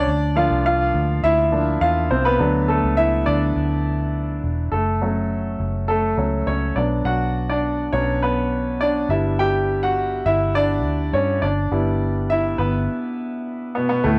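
A clear, polished concert grand piano sits up front with deep bass and short sustain, carrying this hopeful, uplifting piano-driven pop excerpt in straight 4/4 over a dark, round, foam-muted electric bass, moving from Bb and D into F#m, Bm, G and Em/G, before a brief break at 12.9 seconds, all coloured by a worn, warbling cassette-tape pitch drift and a moderate studio reverb.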